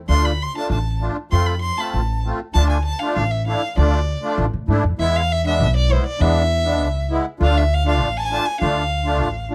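A straight 2/4 pulse at 99 BPM drives this festive, soulful klezmer passage in D dorian with a raised fourth, cut from a longer piece and moving from D minor through F and E before settling back on D minor around 7.4 seconds. A single bowed violin carries the melody with a rich, focused vibrato, while a musette accordion supplies reedy, shimmering accompaniment and a pizzicato upright bass with steel strings adds a woody, dark foundation. All three play throughout, captured up front by close, detailed microphones with a light touch of reverb.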